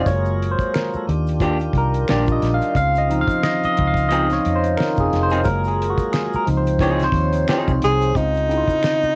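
A barky, lightly overdriven tine electric piano with phaser takes the solo from the start to 8.2 s in this smooth, soulful R&B and neo-soul excerpt at 89 BPM in Db major with a swung 16th-note feel, set over a round, foam-muted fingered electric bass, a cloth-damped, thuddy drum kit with a fat snare, a tonewheel organ in the background with key click and slow rotary speaker, soft egg shaker and finger snaps, and a slightly broken-up, lo-fi electric guitar second line from 1.4 s, before a warm tenor saxophone with subtone and vibrato takes up the melody at 7.8 s, most parts colored by cassette tape in a light reverb.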